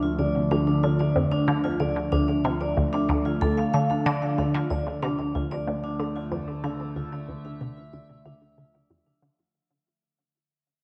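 A straight 4/4 pulse at 93 BPM carries this cosmic, expansive ambient excerpt in D minor, where an evolving, morphing wavetable pad holds slow-attack Dmadd9 chords under chorus, built-in reverb and phaser, a metallic vibraphone rings out up-front arpeggios with fast motor vibrato and tape echo, a juicy, squelchy resonant blip pluck repeats a brilliant low riff through phaser and echo, and a fat, saturated analog bass sits in the background on D2, all bathed in plate reverb and the warbling pitch drift of worn cassette tape before the piece fades out from 4.4 s.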